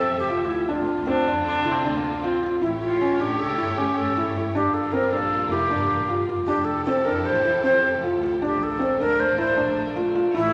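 A mellow, hollow flute carries the melody over soft, intimate felt-muted upright piano arpeggios with audible action noise and sustained, expressive string-section chords with portamento, joined at 0.1 s by a clear bowed double bass and from 1.1 to 2.5 s by a nasal, biting viola second line, in an urgent yet pensive contemporary chamber piece in 5/4, cut from a longer work and set in a recital hall's wet reverb.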